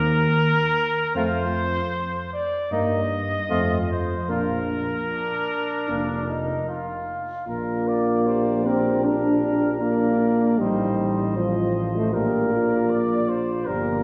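At a stately 77 BPM in straight 4/4, this classical brass quintet passage in Bb major opens with a warm, lightly vibrato trumpet melody up front over a mellow tuba bass, both sounding from 0.0 seconds. At 1.2 seconds a clear flugelhorn second line, a trombone accompaniment with light vibrato, and a soft-edged, smooth-topped French horn in the background join them, carrying the noble mood from the opening phrase into a second section at 7.5 seconds that settles back onto Bb. A lush concert hall reverb and a listening spot further back in the room give the fragment, cut from a longer piece, a spacious, distant sheen.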